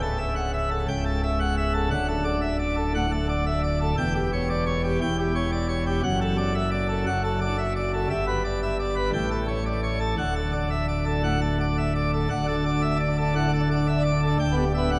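A full-plenum pipe organ, up front with its mixtures blazing and a crisp chiff in a baroque voicing, plays a majestic, brilliant classical toccata alone at 116 BPM in a straight 4/4 in D major, spanning C#1 to G5 through chords moving from A7/C# to D and on to Em7/D in the sweep of a church reverb lasting 3.2 seconds, cut from a longer piece.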